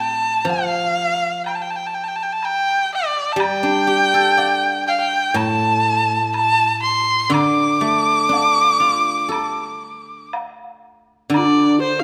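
A clear, focused erhu opens this tender, graceful piece of Chinese traditional chamber music, its single bowed line sitting up front with vibrato and sliding portamento, while a ringing, silvery guzheng, played with fingerpicks, supplies accompaniment from the very first moment. The music moves at an unhurried 61 BPM in a straight 4/4, set in the D yu mode with tuning at A4 = 441 Hz. From 0.5 seconds a woodblock taps along in the background, its bright, small-room sound kept modest beneath the strings. Just before the close, at 11.3 seconds, a hollow, airy bamboo xiao enters as a second line, tongued and end-blown with vibrato in its low register. A wet scoring-stage reverb with a 1.5-second decay lends the ensemble a spacious, graceful glow, and the passage is cut from a longer piece.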